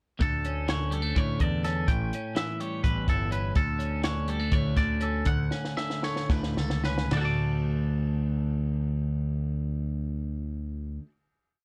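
This short, intricate, bright math rock and midwest emo piece in D major opens at once with the full band in a straight 7/8 groove, moving at 214 to 252 BPM counted in eighths. A bright, clean twelve-string electric guitar plays a rolling fingerstyle arpeggio in its lower range, while a twangy, compressed electric guitar picks a clean, high ostinato above it. An overdriven electric bass sits up front, growling and locked to the punchy kick of a compact cocktail drum kit with a high-tuned snare, dark cymbals and a smooth, rolled-off top in a small room. The harmony moves through D5, A7 and Dmaj9, with the tempo slowing from 3.6 seconds, and a drum fill from 5.5 seconds leads to the drums dropping out at 7.2 seconds. The guitars and bass then hold a final D chord until about 11.1 seconds, in a dry, dark production.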